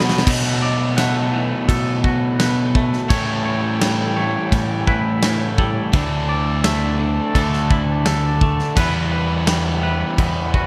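Cathartic and cinematic, this 10.7-second post-rock excerpt at 85 BPM opens on a drum fill from an up-front, big-room kit with a punchy kick and rolled-off top, as a growling overdriven fingered bass and a raw garage guitar riff drive through B7sus4, A7, Dsus2 and Emadd9 while two twangy guitars, one with tremolo and the other with warbly pitch drift, both with slapback echo, spin arpeggios over reedy, slow-beating vintage accordion chords in the background, all under light reverb.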